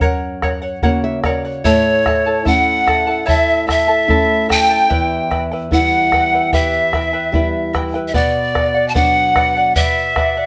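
A festive, earthy Andean folk passage in B minor at 74 BPM opens with a shimmering, fingerpicked charango, a small-sounding nylon-string guitar and a round bombo, with the guitar adding a short fill from 0.4 to 1.6 seconds as the harmony moves from F# to A. At 1.7 seconds a bright, polished wooden pan flute takes the melody up front, its crisp, chiffy attack, straight tone and slight unsteadiness carried by a slapback echo, while a mellow cane quena with expressive vibrato plays a second line in the background through Em and Bm. Close, detailed microphones and a moderate studio reverb give this short cut from a longer piece an intimate, airy presence.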